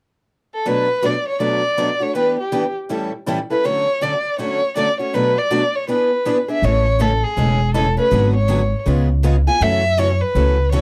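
A bowed violin opens at 0.5 s with an expressive, up-front melody full of vibrato and gliding portamento, soon joined by two bright, boxy picked acoustic guitars, one parlour-style and one swing-style, in this charming, swinging jazz manouche excerpt at 161 BPM in A major. At 6.6 s, as the harmony moves from Bm7 and E7 onto Amaj7, a woody, thumpy pizzicato upright bass with gut strings steps up front. Light reverb wraps the whole in a dark, warm production.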